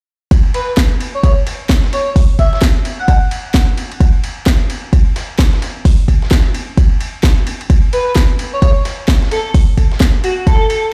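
A punchy, up-front electronic kick and a gritty, overdriven sampler-style kit of hi-hat, ride and snare open this aggressive, bouncy, swung bass house excerpt at 0.3 s, soon joined by a cracking layered electronic snare, while an airy, dreamy, detuned sine lead with chorus, vibrato and digital delay floats in from 0.5 to 3.2 s and returns at 7.9 s, all heard as if through a big sound system in a bare room with large studio reverb.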